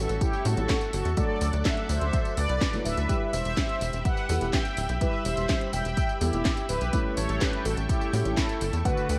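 Italo disco with a nostalgic, danceable mood, this short excerpt from a longer piece moves in a straight 4/4 over chords of A7, D, Em and back to A7. Up front, a mellow, brassy synth brass carries the melody with a round, detuned sawtooth tone, ring modulation and a filter sweep, dressed in chorus and digital delay. The tight sequencer bass drives hard beside it, its square-wave pluck given grit by tube saturation, while a dark, boxy grand piano adds stabs. In the background, a lush string machine ensemble holds sustained chords with a vintage sub-octave thickness, slow attack, long release, a moving notch and ensemble chorus. A tape-warm house kit of cracking snare, metallic hats, handclaps and tambourine enters at 0.1 seconds with small room ambience and gated reverb, joined at 0.2 seconds by a punchy, layered electronic kick, while vinyl crackle sits prominently in the mix.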